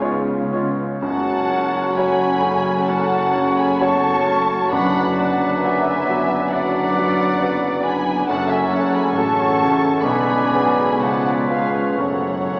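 Classical and tragically passionate at a rubato 66 BPM in F# minor, this brief excerpt sets a bright, brilliant piano melody in the background against muted, veiled violins that take up the tune from 1.0 seconds, while a second violin line and a pure silver flute join a mellow oboe and distant clarinet on second lines, clear bassoon and hushed con sordino violas accompany, very quiet horns and dark trombones hold sustained chords, tuba, cellos and double basses anchor the bass, and soft-mallet timpani sound only from 4.7 to 6.0 seconds, all bathed in a wet cathedral reverb with a small-speaker quality.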